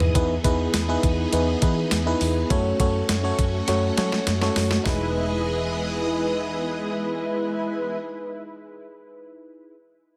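A drum fill from a clean 12-bit drum machine opens this short, glossy cut of 1980s-style pop, as an FM electric piano, a string machine and a muted electric bass start together beneath it. The drum machine sits up front with a thumpy kick, a medium-tuned snare, hi-hat, tambourine and toms, all given a gritty overdriven edge, and a second fill leads into the next section before the drums stop at 5.0 seconds. The electric piano carries the accompaniment with glassy, bell-like chorused tones that decay, while the string-machine violins hold shimmering, bright sustained chords over an Emaj7 to F#m progression. The foam-muted fingered bass is dark, round and punchy. At 4.9 seconds mellow synth brass stabs arrive, detuned and sawtooth-based with a filter sweep, vibrato, chorus and delay, giving the uplifting mood a lift as the harmony returns to Emaj7. A light reverb adds a little space to the mix.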